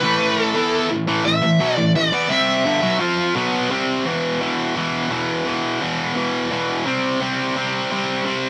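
Rock in E minor at 85 BPM in a straight 4/4, with a driving, swaggering mood, cut from a longer piece. A tight distorted guitar carries the riff for the whole 8.5 seconds, electric, bright and picked, double-tracked and up front in the mix, ranging from E2 to F4. A smooth overdriven lead guitar, also picked, plays a short melody between B4 and E5 that lasts only until 3.0 seconds. The riff moves from an A5 power chord to E5 at 4.1 seconds, where a new section begins, then shifts to C5 at 6.9 seconds. The sound is dry and close, in the manner of a 1970s studio recording, touched with light reverb.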